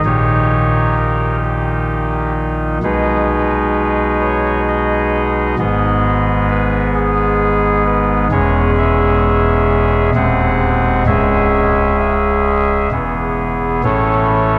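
Awash in a long cathedral reverb with a 4.7-second decay, this excerpt of a grave, solemn classical chorale is carried by a lone chamber organ on a soft reed oboe stop, voiced with a chiff and placed up front. At a rubato 65 BPM in 3/4, the organ spans from a deep C#1 up to F#5 as the harmony settles in G# minor before turning to C# minor at 8.3 seconds.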